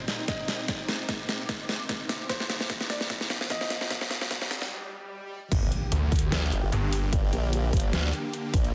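A dark, mellow baby grand piano opens this aggressive, chaotic heavy wobble dubstep passage in G minor at 149 BPM, its delayed melody sitting in the background over huge, lush supersaw chords that pump against the sidechain. An ethereal, airy pad enters very quietly at 0.6 seconds, while the dubstep drum kit with its deep snare, crash and hi-hat, and a punchy, tape-warm electronic kick drive a half-time, lightly swung build-up with a drum fill. Background risers, swells and impacts gather toward a short break before the drop lands at 5.5 seconds on a Gm chord, as the piano falls away. There a saturated formant-sweep wobble bass with chorus and overdrive comes up front, joined briefly by a snarling, growling distorted saw bass that is bright and resonant. The sound is dense and heavily limited, with light digital ambience, and the passage is cut from a longer piece.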